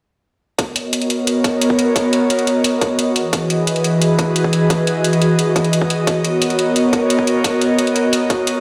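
An airy, breathy pad sits up front in this uplifting liquid drum and bass excerpt, holding sustained chords with a slow attack, long release and a soft chorus shimmer over detuned sawtooth and triangle tones, a noise layer and a touch of ring modulation. Set in B major at 175 BPM in a straight 4/4, it moves from Bmaj9 to Emaj9 at 3.2 seconds and returns to Bmaj9 at 6.1 seconds, giving the passage a mellow, hopeful glow. Beneath it, a tight, layered electronic kick drum, also up front and shaped by a high-pass filter, pairs with metallic electronic hi-hats; both drum parts were re-recorded in a small room. The pad and drums enter together at 0.6 seconds and carry the passage to its close around 8.6 seconds. A moderate plate reverb with a 2.3-second tail adds depth, and the sound of a big system playing into a bare stone room lends the whole piece a cavernous, echoing space.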